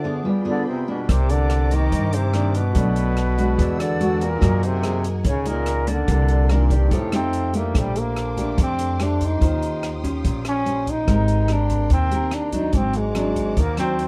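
A sunny, relaxed bossa nova at 144 BPM in Bb major opens with a bright, punchy trombone carrying the melody with vibrato, joined by an airy concert flute playing a second line, over fingerpicked, full-bodied nylon-string guitar, a clean tine electric piano and bowed studio strings gliding with portamento in the background. At 1.1 seconds a woody, thumpy upright bass and an open jazz kit with hi-hat, rim click and a boomy kick join in, while the flute drops out at 7.5 seconds and returns near the end of this excerpt. The production is dark and warm with light reverb, with the bass sitting up front and the trombone forceful yet roomy.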